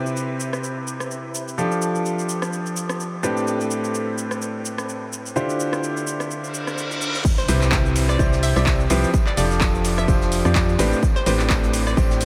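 A bright baby grand piano opens this joyful, uplifting piano house passage at 127 BPM in C major, its up-front riff showing audible action noise and long sustain, with sidechain pumping and tape echo over a Cmaj7, F69, Am11, Dm11 progression. Layered, overdriven electronic drums bring cabasa, crash, handclaps, hi-hat and rim click into a dreamy mix soaked in huge ambient reverb. A very quiet reverse cymbal arrives at 6.5 seconds ahead of an impact and drop at 7.2 seconds, where a punchy kick, a dark organ-like FM bass with sidechain pumping, a distant brushed acoustic kit with snare, hi-hat and tambourine, and a faint, hollow, detuned square-wave pluck with chorus and filter sweep join in.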